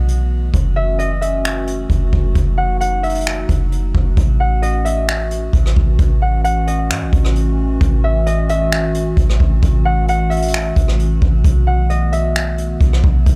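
A soft, round 808-style bass sits up front in this blissful, dreamy cloud-rap excerpt at 132 BPM in half-time, its deep sine tone decaying beneath a warbling, nostalgic tape-like pad whose square- and triangle-wave chords carry chorus, built-in reverb and sidechain pumping. A thumb-plucked concert harp rings out the melody through analog delay, while an acoustic jazz brush kit entering at 0.1 s adds finger snaps, hi-hat, rim clicks and a boomy kick, heard at a distance in a small, roomy space. Tuned to A4 = 435 Hz in A lydian, the harmony moves from B7sus4 and F#m7 to A6 at 4.2 s before returning to B7sus4 at 11.4 s.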